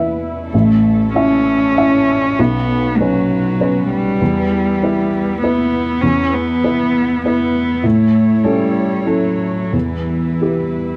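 Neoclassical piano and strings in a melancholic, longing waltz-time excerpt with a loose rubato feel, where a worn, woody, slightly detuned upright piano up front carries the accompaniment, an intimate cello enters at 0.5 seconds with a sul tasto second line of airy bow, soft attack and vibrato, and a dark chamber string section holds sustained chords in the background, all set in light reverb.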